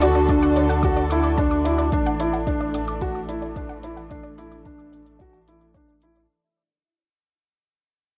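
A straight 4/4 pulse at 110 BPM, with an electronic kick entering at 0.3 s under a tape-softened electronic hi-hat, drives this hopeful, luminous piano and strings electronica fragment, where a felt-muted upright piano with audible action noise plays an intimate riff up front, veiled con sordino strings hold dark sustained chords on cassette tape and plate reverb, a detuned sawtooth pluck sends chorused, pumping arpeggios through analog delay in the background, a round sine sub bass pumps beneath, and a barely audible downlifter sounds until 1.9 s as the harmony moves from D to Asus4 across a fade-out in a home cassette recording with a moderate booth ambience.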